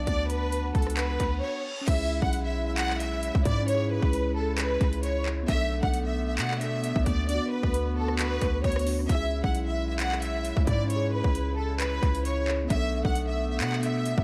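Trap-leaning hip hop at 133 BPM in a half-time feel, this eerie, hard-hitting excerpt in C# phrygian pairs a lush, bowed violin section carrying the melody with dub echo over clear woodwind chords, while a punchy sine 808 bass and an overdriven trap kit with a hard-clipped kick, metallic hats, handclaps and rim clicks drive underneath. A reverse cymbal rises into a brief break from 1.4 to 1.9 seconds, and a mellow tine electric piano enters just before it ends to add echoing accompaniment as the chords move through C#m, Bm7 and D6. The mix is echo-heavy with a digital ambience, keeping the strings and bass up front.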